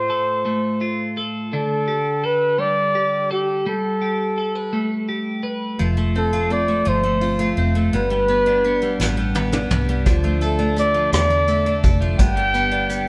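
A warm flugelhorn with light vibrato carries the melody up front in this dramatic, aching six-eight pop ballad, over a bright, twangy twelve-string electric guitar that plays accompaniment from the start. At 5.8 seconds a picked steel-string acoustic guitar joins with arpeggios, alongside a dark, round, foam-muted electric bass. At 9.0 seconds a vintage brush kit arrives with a drum fill and a punchy kick, all played together in a live-sounding stone room with moderate reverb.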